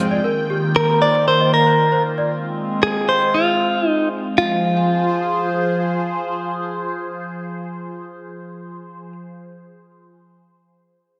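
Over a straight 4/4 pulse at 116 BPM in F minor, this driving, melancholic pop excerpt sets a swirling, nasal analog pad with phaser and chorus holding sustained chords up front from Ebadd9 to Fm, while a worn, slightly out-of-tune celesta with tape echo plays delicate bell-like arpeggios in the background until 2.3 s, and a clean, picked electric guitar carries the melody from 0.8 s through spring reverb and tape echo, all set in a lush hall.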